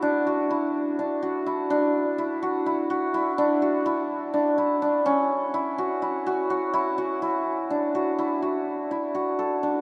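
Set in an uneven 7/8 metre with a straight feel, this contemporary instrumental moves at 250 BPM counted in eighths, giving its pulse a lopsided, circling quality. A solo hammered dulcimer carries the whole piece, sitting up front with a warm, shimmering, ringing tone as it plays between C#4 and A4. Its harmony moves from Dadd9 to F#5 at 5.1 seconds, then settles on a rootless Bm7 when a brief new section opens at 8.4 seconds. Huge, wet reverb with a 7.6-second decay places the instrument in a vast, echoing space, so each struck note blooms and lingers. The mood is pensive and hypnotic, and this short passage, cut from a longer piece, ends at 9.8 seconds.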